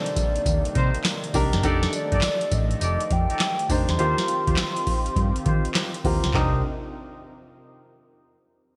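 Slick and punchy, this short new jack swing excerpt in C dorian moves at 102 BPM with a swung 16th-note feel, its chords running from Cm7 through F13 and Eb69 back to Cm7 under a filter sweep across the opening 6.3 seconds. A hollow, woody clarinet-like synth lead carries the melody over clear baby grand piano and a thick, detuned unison pad in the background, while a booming analog drum machine sits up front with a deep kick, crisp snare, metallic hats, handclaps, tambourine, toms, 12-bit sampler grit and gated reverb. A round hollow-body picked electric bass enters at 0.5 seconds and a mellow horn section adds vintage jazz-style stabs from 0.7 seconds, the whole mix set in a lush hall reverb with bright 1980s-style digital production.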